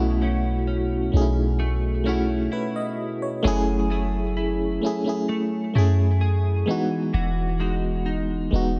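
A dreamy, reverb-soaked mix opens this moody, longing R&B fragment in F# dorian at 65 BPM, where a soft, round 808-style bass sits deep and up front beneath an FM electric piano with tremolo and a noise layer, while a clean, compressed direct-recorded electric guitar picks arpeggios through analog chorus and delay over chords moving from B9sus4 to F#m9 at 3.4 seconds and Emaj9 at 6.7 seconds.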